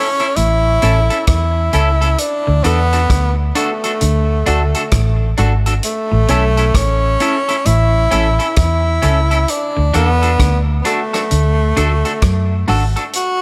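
A breathy, close-miked tenor saxophone carries the melody up front with clear vibrato and tape echo over a sunny roots reggae groove at 66 BPM, backed by a round, punchy foam-muted bass, a vintage drum kit of hi-hat, tight kick and rim click with a rolled-off top, a slightly broken-up picked electric guitar with its own tape echo, a very quiet scooped semi-hollow guitar riff, and hollow, mellow organ stabs with chorus and phaser sitting in the background, all in a light reverb over an A and D excerpt cut from a longer piece.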